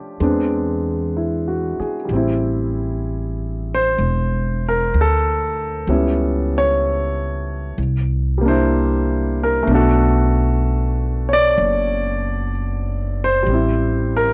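A grand piano opens this intimate, tender jazz ballad, joined almost at once at 0.2 seconds by a pizzicato upright bass, and the two carry on together until the cut at 14.3 seconds. The piano has a warm, natural tone with its action noise audible, while the woody bass sits low and up front, and both move through a gently swung slow four over chords such as E7b13, Am7, C#m7b5, C9 and Bm7. The sound is dry and close, in the manner of a 1970s studio recording.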